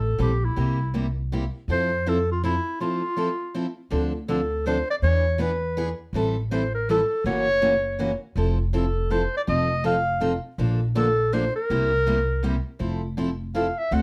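Acoustic string swing in the jazz manouche style, this playful, charming passage cut from a longer piece moves at 162 BPM in a swinging 3/4, centred in F major. A clear clarinet carries the melody up front, its light vibrato and scooped notes giving a jazzy lilt, wrapped in a plate reverb. Beneath it, a pizzicato upright bass on gut strings sounds woody and thumpy, while a picked steel-string parlour guitar, boxy with fresh strings, joins at 0.2 seconds to supply the accompaniment. The harmony wanders through chords such as Am7, C7, Dm7, E7 and Gb7 before settling on Fmaj7, with a break from 2.8 to 3.9 seconds and a short clarinet solo from 12.8 seconds. A moderate studio room and a dark, warm production keep the trio close and intimate.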